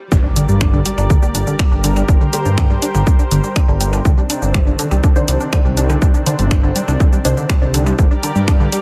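A background swell and impact open this hypnotic, cinematic melodic techno excerpt in G minor at 122 BPM, landing straight into the drop as an overdriven, up-front kick drives the 4/4 pulse alongside finger snaps, hi-hat and shaker from a tape-warm analog drum machine with analog delay. A menacing, saturated detuned saw bass, a tight sequenced synth playing dark arpeggios through dub echo, and a lush, airy unison pad holding bright chords all pump against the kick, moving from Gm to Cmadd9 at 4.1 seconds and back. From 1.2 to 7.4 seconds, muted, nasal dub chord stabs with phaser and a moving notch sit in the background of a dry, echo-heavy mix.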